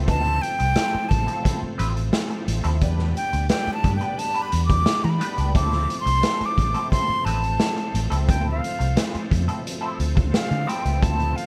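Funky and driving, this short funk excerpt features a breathy, close-miked silver flute soloing up front over a punchy, foam-muted fingered bass, a gritty garage drum kit with hi-hat, kick and snare, a clean semi-hollow guitar with wah and chorus, and a shouting tonewheel organ through a slow rotary speaker, all in a dry room as the chords move from Dm9 to Em7 and back.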